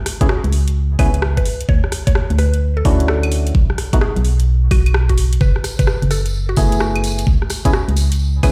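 UK garage in a two-step groove at 129 BPM in F# minor, this moody, bouncy excerpt swings over a knocking kick and a kit of claves, metallic hi-hats and rim clicks, while a dark, up-front FM bass anchors hollow organ stabs in lush chorus and a woody, round mallet-like pluck in chorus, both carrying dub echo, through chords moving from C#m7 to Dmaj9, B5 and F#m11, with a jingly tambourine joining at 5.4 seconds, all set in a large studio reverb as if played on a big sound system in a bare room.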